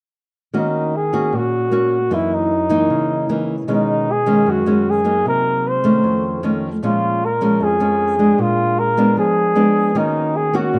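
A breathy, mellow, vintage flugelhorn carries a wistful, smooth jazz-style melody up front with light vibrato and scooped notes, entering at 0.6 s over a small, fingerpicked nylon-string guitar in this bossa nova passage cut from a longer piece, with the dark, warm production wrapped in a moderate echo-chamber reverb.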